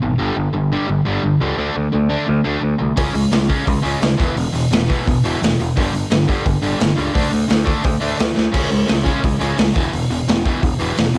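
This punk rock excerpt sounds rebellious and energetic, cut from a longer piece and driven by a straight 4/4 pulse. A distorted, picked electric guitar opens the riff at once, bright and compressed, double-tracked and pushed up front, with a worn cassette-tape character on its tone as it cycles through G5, D5, C#5 and E5 power chords. Beneath it, an overdriven picked electric bass growls from the start, amped yet direct. A raw garage drum kit crashes in at 3.0 seconds, playing acoustic in a small, pumping room: a punchy kick, a medium-tuned snare, hi-hat and crash cymbal, all saturated and gritty with a rolled-off top. The drums hit a fill at 8.4 seconds. The whole thing has the rough feel of a home recording on cassette, touched with studio reverb.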